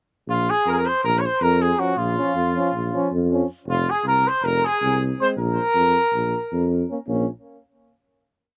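Dry and open-air, this brief, fiery yet bittersweet Balkan folk piece moves at 318 BPM in eighths through a straight 9/8 in B-flat minor. Its harmony shifts from Bbm to Fm and Bb5 before settling on a final Bbm chord at 7.1 seconds. A veiled, cup-muted cornet carries a motif-based melody in period phrases, doubled in unison by a clear trumpet, both with slapback echo, while a mellow tuba plays root-and-fifth bass on the main beats from the start. From 1.8 seconds a euphonium, also touched by slapback echo, and a warm trombone add offbeat chord tones with light vibrato, with the euphonium sitting quietest in the blend.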